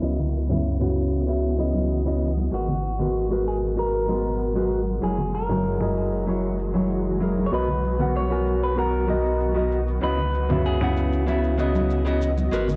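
Blissful and warm, this sunset chillout excerpt drifts along at 96 BPM in a straight 4/4, moving through C#m11, G#m9, F#9 and Bmaj7 chords. An up-front, full-bodied fingerpicked nylon-string guitar under a filter sweep and digital delay sits alongside a deep, round sine sub bass with tube saturation, while a bright, twangy clean electric guitar with tape echo carries the melody. In the background sit a shimmering, ethereal detuned pad with chorus, gritty overdriven electronic shaker and toms, and acoustic congas entering at 0.2 seconds, with a barely audible downlifter in the first 2.5 seconds, all set in a plate-reverb ambience on a blown-out, overdriven recording.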